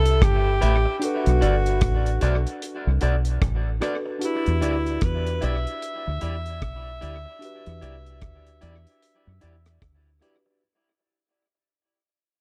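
A dark, reverb-washed studio production, fading across its full 10.6 seconds, frames this smooth, longing lovers rock reggae excerpt in E minor at 75 BPM, with a swung sixteenth feel over Cmaj7, Bm7 and Em7. Up front, a breathy, close-miked alto saxophone carries a whispered, intimate melody with tape echo, over a round, foam-muted fingered electric bass and a dry, tight reggae kit of hi-hat, kick and rim click that shares the echo. A worn, slightly out-of-tune tine electric piano plays the accompaniment, while an electric guitar through a small old amp adds slightly broken-up, picked, echoed stabs from 0.6 seconds.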